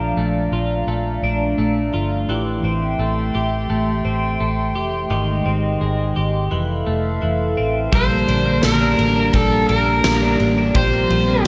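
Dream pop at 85 BPM in a straight 4/4, this dreamy, floating excerpt from a longer piece is tuned to A4 = 437 Hz and drifts through chords such as Bbmaj7, Am7, Abmaj7 and Fmaj7. A hollow, flute-like pad with a slow attack and chorus holds sustained chords beneath a bright, twangy twelve-string electric guitar, whose clean, compressed arpeggios shimmer through lush chorus and digital delay. A vintage muted fingered electric bass, round and foam-muted, sits up front on the low notes throughout. At 7.9 seconds the harmony turns to Gmadd9 as a huge arena drum kit arrives with a punchy kick, fat snare, bright ride cymbal and tambourine. From 8.0 seconds an overdriven slide guitar carries a short melody through digital delay before the closing Csus4, and a concert hall reverb bathes the whole mix in a long, wet tail.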